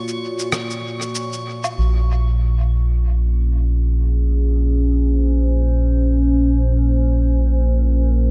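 Spacious and hazy, this ambient dub passage in free time and Bb minor, cut from a longer piece, opens with a warbling, nostalgic tape-like pad with chorus holding a rootless Ab9sus4, while a glassy, drifting glass-harmonics texture and a muffled, sampler-style kit of electronic shaker, rim click and woodblock, soaked in dub echo, hover through a break; at 1.8 seconds these two drop away and a deep, round analog bass arrives up front on Bbm7 as a filter sweep moves across the pad until 8.3 seconds, in a lightly reverberant space.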